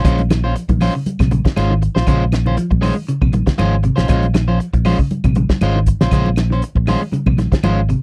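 Recorded with little reverb, this short cut from a longer piece is an intense, funky afrobeat groove in Bb minor at 118 BPM, with lightly swung sixteenths over a Bbm9 chord. Up front, a soul drum kit with a fat snare, tight kick and rolled-off top sits in a pumping room beside a growly, punchy fingered electric bass, while a slightly broken-up electric guitar plays picked stabs and a clean, hollow-body guitar picks arpeggios in the background. Bright, damped congas and woody claves sit further back, and the drums play a fill at 5.5 seconds.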